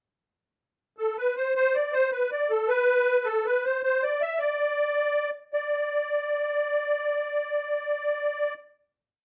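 A lone musette accordion opens at 1.0 s with a rollicking, cheerful Celtic folk tune in a straight 6/8 at 106 BPM, its reedy, shimmering wet tuning heard close and full at the front of the sound. The short motif-based melody unfolds in balanced phrases before settling onto a held final note from 5.5 s to 7.8 s. A small room adds a modest touch of reverb to the rough home-demo mix.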